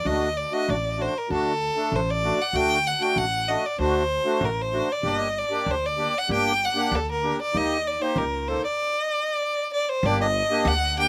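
An outdoor recording, dry and free of room sound, catches a soulful, festive klezmer fragment in 2/4, cut from a longer piece, where a single rich, smooth bowed violin sings the melody up front with even vibrato over a reedy, airy accordion with a sweet, light tremolo tuning and a woody, thumpy pizzicato upright bass, moving from D through Gm and Eb to a brief chordless passage at 8.8 seconds before landing back on Gm at 10.0 seconds.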